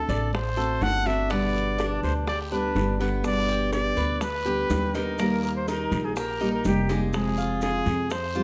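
Warm and danceable, this Cuban son and guajira passage, cut from a longer piece, features an up-front solo trumpet singing the melody with vibrato over a full-bodied, fingerpicked nylon-string guitar, metallic double-strung tres arpeggios and a woody, thumpy pizzicato upright bass. Tight, high-tuned bongos and a raspy guiro sit in the background, joined at 3.2 seconds by grainy maracas. A breathy, bright concert flute adds a brief, slightly unsteady second line from 5.4 to 7.0 seconds, all within a light reverb.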